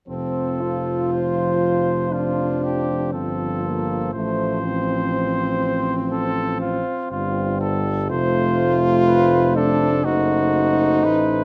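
All five brass voices sound together from the start in this stately, noble classical quintet passage, cut from a longer piece: a smooth-topped trumpet carries the melody with light vibrato, a warm flugelhorn holds a quiet second line in the background, and a soft-attacked, close-miked French horn with vibrato leads the accompaniment, joined by a gentle background euphonium. Beneath them, a mellow, roomy tuba sits up front yet sounds distant, giving the bass a resonant depth. The harmony rests on F before a diminished chord at 10.1 seconds adds a moment of tension, all captured with close, detailed microphones and light reverb.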